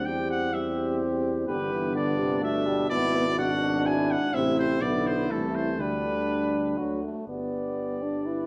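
From the first moment, all five members of a brass quintet sound together in this noble, stately classical excerpt in G major, moving in a measured 3/4 at 125 BPM. A clear trumpet with light vibrato carries the melody from a distant, roomy position, while a flugelhorn with a soft attack and smooth top sings the second line beneath it. The French horn, warm and present with light vibrato, gives the inner accompaniment the most weight, and a mellow trombone, also with light vibrato, sits farther back in the background. A distant tuba with gentle vibrato anchors the bass. The harmony moves from C/E through G, E7/G#, Am and G/D to D, arriving on G as a new section begins at 7.3 seconds, all of it carried by the resonant ambience of a recital hall.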